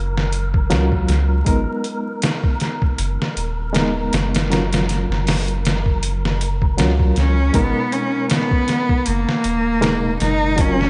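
A bowed cello carries the melody from 7.2 s, one player up front with a nasal, focused, boxy tone, vibrato and a touch of tape echo. This short cut from a longer trip hop piece sits at a slow 79 BPM in 4/4 with a light swing on the sixteenths, and its mood is smoky and melancholic. A reedy, worn electric piano, bright and slightly out of tune, plays the accompaniment through its built-in speakers with light overdrive, tremolo and tape echo, moving between F#maj7 and G#madd9 in G# dorian. Underneath, a soft, round dub sub bass holds the low end, while a gritty, compressed, pitched-down sampler-style kit enters at 0.2 s with a thumpy kick, medium-tuned snare and hi-hat. An airy, breathy noise texture drifts like wind in the background with its own reverb and ensemble chorus, and the whole mix is dreamy and reverb-soaked, with vinyl crackle and a dulled top end.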